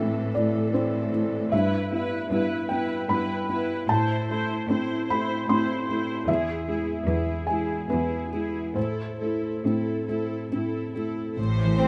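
A cinematic, emotional film score for orchestra in a rubato 3/4, this bittersweet, longing excerpt opens with a soft, felt-muted upright piano sitting up front and intimate. It is framed by a clear viola section with light vibrato and a focused, lush cello section holding the bass, all in a close, detailed sound with light reverb. Near the end, at 11.4 seconds, a distant violin melody and an even double bass section enter, joined at 11.8 seconds by an expressive, smooth-topped second violin line with a soft attack.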